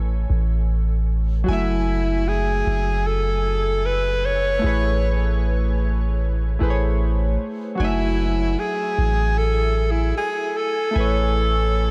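A breathy, close-miked alto saxophone carries the melody from 1.5 seconds, its whispered subtone, soft attack and vibrato sitting up front with a touch of delay in a jazz-style solo that feels intimate and full of longing. This contemporary R&B fragment moves at a slow 76 BPM in F# minor, with round analog keys in pulse and sawtooth tones, colored by chorus and a filter sweep, drifting between Amaj7 and F#m9 beneath a deep, dark, sine-like 808-style bass that sustains up front. A huge ambient reverb soaks the whole dreamy, sensual mix, letting every note hang in the air.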